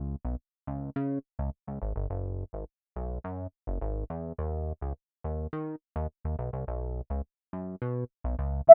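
A glossy, nasal chorused synth bass opens this late-night, danceable stretch of early-eighties boogie funk, its pulse-wave and sawtooth tone shaped by a filter pluck and a moving notch as it moves from a C#5 power chord through F#9sus4, a harmonic break and Bsus2. At 8.7 seconds, just as the bass stops, a smooth, dark synth lead arrives up front on a single sustained E5, sweetened by chorus and vibrato. The dry, rough home-demo mix carries little reverb, and the passage is cut from a longer piece.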